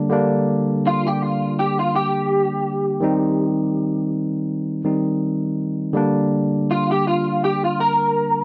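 A slightly broken-up, lo-fi electric guitar through a small old amp carries a picked, smoky and brooding blues melody with ensemble chorus from 0.9 seconds, over a barky, clean tine electric piano accompanying on Gm and Cm with a gentle swing, both parts up front in a dry, close 1970s-style studio sound in this brief cut from a longer piece.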